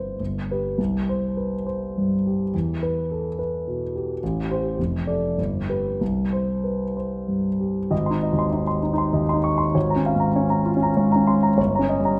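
A concert grand piano sits up front in a wet recital hall, with a 1.4-second reverb tail that lets its long sustain bloom while the audible action noise keeps the sound intimate. This is a lyrical romantic character piece for solo piano in 3/4, moving with rubato at roughly 94 to 108 BPM and tuned slightly low at A4 = 437 Hz. The tone is polished and present, and the deep bass anchors a span that reaches from F1 up to Db6. The opening phrase settles in C major, drifting through E minor, A minor seventh and D minor harmonies before returning home. At 7.9 s the music turns unexpectedly to A-flat major, a shift of colour that deepens the tender, warm mood. The passage is cut from a longer piece and breaks off at 12.2 s on an unresolved E-flat seventh chord.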